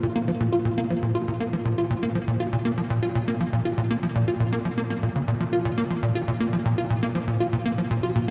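A tight sequencer bass opens this short ambient excerpt alone, and it carries the whole 8.3 seconds by itself at a steady 120 BPM in 4/4 with a straight feel. Its tone is punchy and saturated, built from sawtooth, square and sine waves that are wave-folded and shaped by a filter pluck, a moving notch, a fast attack and a decaying tail, spanning Bb2 to F4 and sitting up front in the mix. Lush chorus, cassette tape colouring and tape echo give the bass a mellow, hazy edge despite its driving character. The whole recording sits in a cathedral reverb with a 6.9-second decay, leaving a dreamy, soaked space around the notes. The mood is mysterious and hypnotic, a single section that feels lifted from a longer piece.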